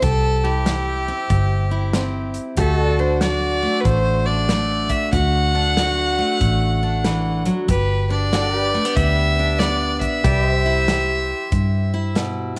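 A swung 4/4 groove at 94 BPM drives this sunny, nostalgic slice of honky-tonk and classic country in D mixolydian, cut from a longer piece and tuned slightly under standard pitch. A natural country drum kit of hi-hat, punchy kick and medium-tuned snare sits in an airy, polished studio room, while a vintage foam-muted fingered electric bass, dark, round and up front, anchors the low end throughout. A bright, full-bodied dreadnought acoustic guitar supplies picked accompaniment, and in the background a clean, twangy pedal steel guitar, played with fingerpicks and slide, holds compressed sustained chords with volume swells and a subtle chorus. Carrying the spotlight is a single close, biting fiddle, clear and intense with light vibrato and an airy bow, taking a solo that spans the whole excerpt. The chords move from C to D at 2.6 seconds, to G at 7.7 seconds, and back to C, all wrapped in light reverb and small room ambience.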